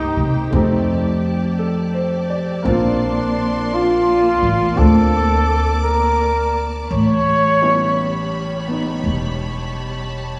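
This excerpt of a wistful jazz ballad is bathed in the lush, wet reverb of a recital hall, with a lingering decay that gives it a churchly, spacious glow. A breathy, mellow flugelhorn carries the melody up front in a smooth jazz style, its vibrato and scooped notes adding a tender, melancholic edge before it falls silent at 8.6 seconds. Beneath it, a clear concert grand piano with a deep, vintage bass register supplies accompaniment. A focused studio string section holds bowed chords with its own vibrato. The acoustic upright bass is plucked pizzicato, woody and thumpy on steel strings, and sits close in the mix. The harmony drifts from Cm7 through F13 to Bbmaj9 before settling on A9, all over a gently swung 4/4 feel.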